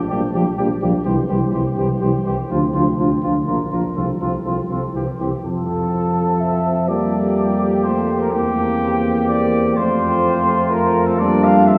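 A dark trumpet with light vibrato carries the melody in this noble, stately classical brass quintet excerpt in F major, moving in 3/4 at 125 BPM, while a warm, vintage-toned flugelhorn sings a second line beneath it. A mellow, soft-attacked French horn and a mellow euphonium sit in the background as accompaniment, and a mellow tuba stands up front on the bass, with all five playing together from 0.1 to 11.8 seconds. The group is heard from further back in a cathedral with a long, wet reverb, and the music shifts into a new section at 5.4 seconds, landing on F.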